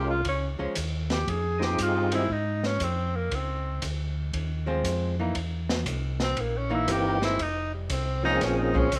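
A warm tenor saxophone with a soft attack and vibrato carries the solo across this short, late-night soul jazz organ trio clip in F minor at 118 BPM, swung and bluesy over a Bbm7, Fm7, Dbmaj7, C7#9 progression. A fat, lightly overdriven tonewheel organ with key click, percussion and a slow rotary speaker adds melody at the start and again from 6.9 seconds. Beneath them, a dark, clean hollow-body archtop guitar picks accompaniment, a round, mellow second organ holds the bass line up front, and a small-room acoustic drum kit with dusky cymbals and a boomy kick enters at 0.2 seconds, all wrapped in light reverb and the soft haze of a home cassette recording.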